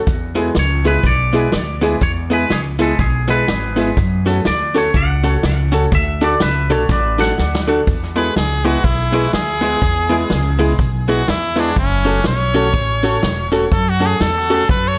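Light studio reverb frames this upbeat, joyful ska excerpt in E mixolydian at 123 BPM with a swung feel: a twangy, bright electric guitar carries the melody through tape echo until 7.7 seconds, and a brilliant, forceful trumpet with vibrato takes over at 8.2 seconds, over woody, thumpy pizzicato upright bass up front, a big-room big-band drum kit with a punchy kick and a fill at 6.9 seconds, clean hollow-body jazz guitar accompaniment and slightly detuned upright piano stabs with audible action noise.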